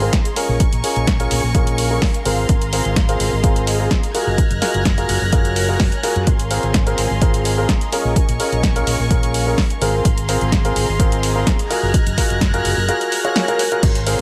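A bright baby grand piano carries this feel-good, euphoric piano house cut at 127 BPM in Ab mixolydian, its brilliant, long-sustaining riff run through sidechain pumping, a low-pass filter and dub echo over chords moving from Bbm7 to Ab69 and Gbmaj9. A punchy, tape-warm electronic kick sits up front from 0.1 seconds, joined by an analog drum machine's crash, hi-hat and snare, while a round, amped fingered electric bass pumps beneath. Smooth bowed chamber strings hold sustained chords and an ethereal, airy pad with chorus, phaser and reverb drifts in the background, all in a small room, with a barely audible acoustic hi-hat slipping in at 13.8 seconds.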